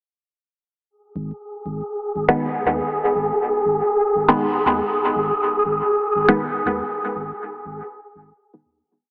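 Drenched in a lush hall reverb yet squeezed into a heavily compressed AM-radio sound, this short dub techno piece in G# minor moves at 120 BPM with a cavernous, hazy mood. A round sine sub bass plays off-beat from 1.2 s, a breathy, wind-like tuned noise layer holds a dark high note up front, and from 2.3 s sparse, muted chord stabs built from detuned sawtooth and square waves pluck through a filter, their single shape moved in parallel through phaser and dub echo. The piece then fades out from 6.2 s.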